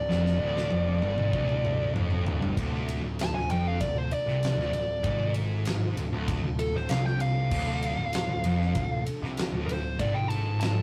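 A compressed, up-front fuzz lead guitar carries the melody in this hypnotic, brooding stoner and doom metal excerpt at 97 BPM in 4/4, taking a solo from 2.6 seconds after a drum fill opens the kit at 0.1 seconds. Two dark, picked fuzz guitars grind out the riff, starting on a D minor chord, one set further back, over a round, overdriven picked bass and a big acoustic drum kit with a fat snare and tight kick. A very quiet vintage string machine holds lush sawtooth chords with ensemble chorus beneath, all caught in a rough rehearsal-room sound with light reverb and saturation.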